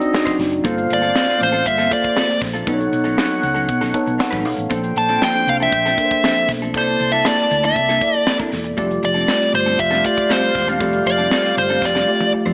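Urban and breezy, this polished 1980s jazz-funk pop excerpt moves at 118 BPM in F major, with a nasal, overdriven lead guitar through a parked wah carrying the melody up front from 0.9 seconds over mellow horns, a tine electric piano and a clean, compressed background guitar (both keys and guitar bathed in lush chorus), a dark, round hollow-body bass and a crisp fusion kit with a high-tuned snare, punchy kick and gated reverb, all in a plate-reverb studio space with a small-speaker sound, an electric piano fill at 3.7 seconds and a drum fill at 11.8 seconds.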